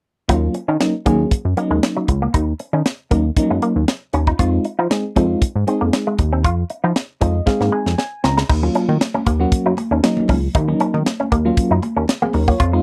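A dry, close, 1970s-style studio sound frames this slick, danceable early-eighties boogie funk excerpt, where a tight funk drum kit with a high-tuned snare and a glossy, chorused synth bass sit up front beneath a mellow, warbling FM electric piano with chorus and tremolo and a twangy, clean guitar riff through an envelope filter, the piano and drums each adding a fill just before a shift at 8.5 seconds, after which thin-skinned congas join in the background.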